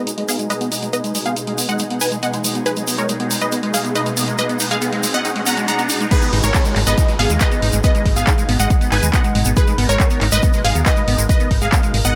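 Uplifting trance at 139 BPM in G# dorian, this euphoric, driving excerpt opens with a build-up on a G# minor chord: a bright, detuned unison pluck melody and a squelchy, resonant acid bass arpeggio both undergo filter sweeps over a mellow, evolving supersaw pad, all pumping with sidechain, with phaser on the pluck and pad and chorus and dub echo on the bass. A tape-warm analog drum machine with hi-hat, handclaps and crash, plus a grainy egg shaker, drive the groove as a background riser climbs from 1.7 seconds. At the drop at 6.1 seconds, an overdriven, up-front kick arrives, followed at 6.3 seconds by a round, dark FM bass, while a natural-sounding grand piano adds a second line in the background with dub echo, all under light reverb.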